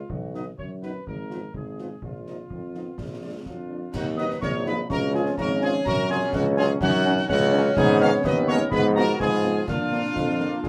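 A straight 2/4 pulse at 125 BPM drives this stern, martial wind-band march in Eb minor, with concert bass drum, snare and clash cymbals with dark cymbals sounding in a live room under a distant, roomy trumpet section carrying the melody while a clear tuba sits up front on the bass. Mellow woodwinds and French horns fill in from the background, a vintage-toned euphonium joins at 2.5 seconds, a pure, expressive piccolo with vibrato enters at 3.5 seconds, and a very quiet trombone section adds sustained chords from 3.9 seconds. A moderate booth ambience surrounds the band as the harmony moves from B and Bbsus4 through Ebm, Db and Abm before settling on Bb.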